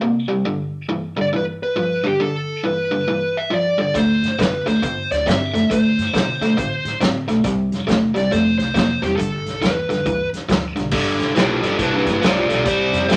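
Rollicking and soulful, this electric blues shuffle in G mixolydian swings at 138 BPM in 4/4, with a biting, bright overdriven rhythm guitar riff starting at 0.0 s and a dark, smooth overdriven lead guitar melody entering at 1.2 s. A natural, small-room drum kit with a punchy kick and medium-tuned snare joins near 3.9 s alongside a woody, thumpy pizzicato upright bass on gut strings, as the chords move through G7, D7, and C7. The lead guitar takes a solo at 10.9 s in this excerpt, cut from a longer piece and set in moderate studio reverb.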